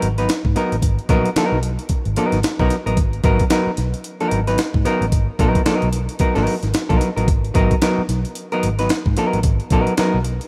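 A rough home demo mix with light reverb and a digital ambience frames this cool, funky excerpt at 111 BPM in 4/4, its sixteenths swung at 60% and held on a single Abm9 chord. Up front, a gritty, compressed, pitched-up breakbeat sampler kit drives a thumpy kick, a high-tuned snare, hi-hat and a tape-warm grit, while a vintage muted fingered electric bass sits underneath, dark, amped, foam-muted and round. A clean, picked hollow-body jazz guitar, also up front with a shadowy electric tone, comps until 10.2 seconds, just before the bass and drums stop.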